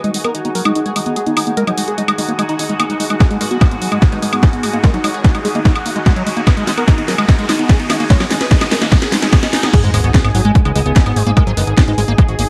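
A straight 4/4 pulse at 147 BPM drives this intense psychedelic trance passage in G# minor: a layered drum kit with a cracking snare, bright hats, crash and woodblock runs from the start, a punchy, tape-warm electronic kick joins at 3.2 seconds, and a build-up with a riser and drum fill leads into a drop at 9.7 seconds. A bold, detuned unison lead with phaser and tape echo carries the melody over a squelchy liquid acid bass riff under a filter sweep, while a bubbling stepped-filter texture holds chords and a blurred granular cloud pad drifts in the background; the lead, acid bass, texture and pad all pump with sidechain. A very quiet, juicy blip pluck adds a second line in two short bursts, and at the drop a fat, saturated analog bass sits up front beneath an impact and sub drop, all within a dark production with light reverb.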